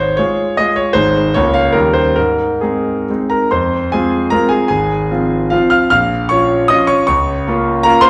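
A wet recital-hall reverb surrounds this brief classical excerpt, recorded in a church or concert hall, with a concert grand piano placed up front and close enough that the clatter of its action can be heard. It is a romantic dance in triple time, proud and graceful, with dotted rhythms and a flexible rubato feel. The solo piano spans from deep bass notes to a bright upper register, its tone polished and intimate, with long sustain blooming into the hall. The opening phrase moves through elegant major-key harmonies before the music shifts at 3.5 seconds into a darker minor passage. The recording is cut from a longer piece, ending at 8.1 seconds mid-thought.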